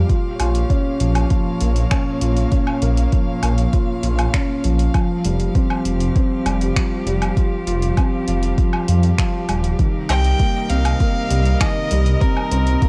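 A straight, steady four-four pulse drives this melancholic, hypnotic piano-and-strings electronica, anchored by an overdriven electronic kick that sits up front with a deep, layered punch. Around it, an overdriven deep house kit of finger snaps, hi-hat and woodblock adds a small-room, produced texture. A dark, detuned sawtooth bass rumbles and beats beneath, saturated and sustained, pumping with sidechain compression alongside a chamber string quartet whose bowed, vibrato-laden chords sound smooth and even under the same sidechain breathing. A felt-muted upright piano repeats a soft, intimate riff through a digital delay, its thick felt and audible action noise lending a vintage, mellow character. The harmony moves from Bbm through Fsus2 to Cm7, and at 10.1 seconds a single violin enters with a clear, nasal, biting melody, intense yet smooth on top, in this short cut from a longer piece set in light reverb.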